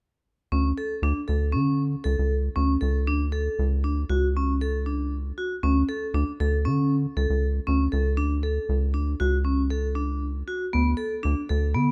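Contemporary chamber music in 5/4 at 118 BPM, this playful, restless excerpt in D major sets a hard-mallet vibraphone playing metallic, ringing arpeggios with a slow motor vibrato against a rubbery, hollow square-wave bass whose filter pluck gives each note a fast attack and a bouncy decay. Both parts sit up front from 0.5 to 11.9 seconds, moving from Dmaj7 harmony to a rootless Esus4 at 10.7 seconds. Close, detailed miking with little reverb keeps the sound dry and intimate.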